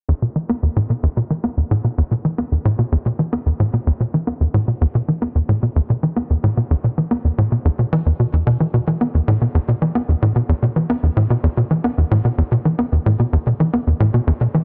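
Ambient music at 111 BPM in a straight 4/4, tuned to A4 = 443 Hz, this brief cut from a longer piece feels hypnotic and expansive. A tight sequencer bass carries the whole passage from 0.1 to 14.6 seconds, repeating a riff that ranges from E2 to B3. Its tone blends sawtooth and square waves with a plucked filter, a fast attack and a decaying tail, giving it a punchy, driving character that sits up front in the mix. Analog chorus and delay thicken and extend the bass line, while a filter sweep runs across its full length. A light reverb frames the single part, keeping the sound close yet open throughout the one continuous section.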